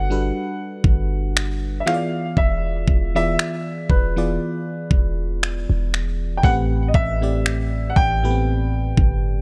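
Contemporary R&B with a tender, dreamy mood, this short fragment of a longer piece sets a natural-sounding baby grand piano melody over a glassy, bell-like FM electric piano treated with chorus, moving through Gmaj9, E7b9 and Am9 chords. A deep, boomy 808-style bass with a sine tone, a fast attack and a decaying body sits up front. An electronic trap kit of finger snaps and a knocking kick enters at 0.8 seconds and stops at 9.2 seconds, all framed by a digital ambience.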